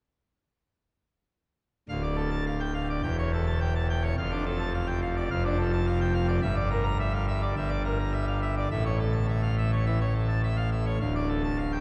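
A straight 4/4 pulse at 105 BPM drives this dramatic, stormy classical organ toccata in D minor, cut from a longer piece. A solo pipe organ on full organ with mixtures sounds from 1.9 to 11.8 seconds, spanning D1 to Bb5 with a majestic, brilliant baroque voicing and audible chiff, placed up front. It moves from Dm through A7/E, Dm/F, Em7b5/G and A before settling back on Dm at 11.0 seconds, all inside a wet cathedral reverb with a long, five-second decay.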